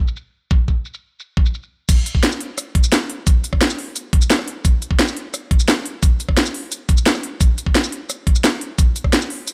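A straight, driving 4/4 drum and bass groove runs through this dark, aggressive excerpt from a longer piece. The layered electronic drum kit enters at 0.1 seconds with a cracking snare, crisp hi-hats, rim clicks, shaker and crash cymbal, each filtered through a low-pass that softens its top end, and the kit carries a tape-warm character. A knocking electronic kick joins at 0.5 seconds, sitting up front alongside the kit, and its slightly roomy tone comes from being re-recorded in a small space. At 1.9 seconds the track hits its drop, and the pounding kick and filtered kit carry the rest of the clip with relentless energy. A digital ambience surrounds the drums, giving the tight, produced sound a sense of space.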